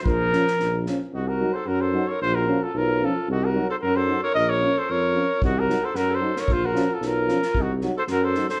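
A roomy, reverberant live-in-one-room sound frames this fiery, virtuosic Balkan brass band fragment in a lightly swung 2/4, where a mellow cornet leads up front over a vibrato-laden alto saxophone second line, a distant up-front tuba bass, background euphonium and vintage-toned trombone accompaniment, and an acoustic drum kit of tight kick and medium-tuned snare played with bundle sticks that drops out after 0.9 seconds and returns at 5.4 seconds, all circling between Bbm and Cdim.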